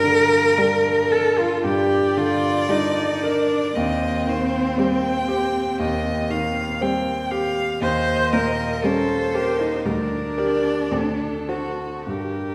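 A dark, woody cello sits up front with vibrato, carrying the second line of this slow, rubato romantic movement for piano quartet in G minor, moving at about 50-60 BPM in a melancholic, solemn mood. A smooth, vintage-toned grand piano, also up front, supplies the accompaniment, joined at 0.6 seconds by a distant, even viola in the background. At 1.6 seconds a warm, close violin enters with the melody, its soft attack, vibrato and portamento all bathed in the lush reverb of a church or concert hall, in this passage cut from a longer piece.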